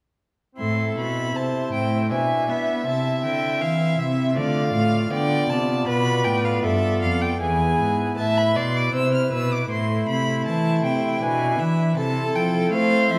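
This is a baroque-style classical sonata movement with continuo, introspective and flowing, in A minor at 79 BPM in a straight 3/4, tuned to A4 = 439 Hz. A pipe organ on a nasal cornet solo stop with tremulant and romantic voicing supplies the accompaniment from 0.5 seconds. A rich, up-front solo violin joins at 0.6 seconds to carry the melody with smooth, even bowing and vibrato. Beside it, a clear second violin plays an intense inner line with light vibrato and an airy bow, while a warm, expressive cello holds the bass with vibrato and portamento. The harmony moves from Am through Dm, Bdim and E before returning to Am/C near the close. A wet recital hall reverb surrounds the ensemble, and the passage is cut from a longer piece, ending at 13.2 seconds.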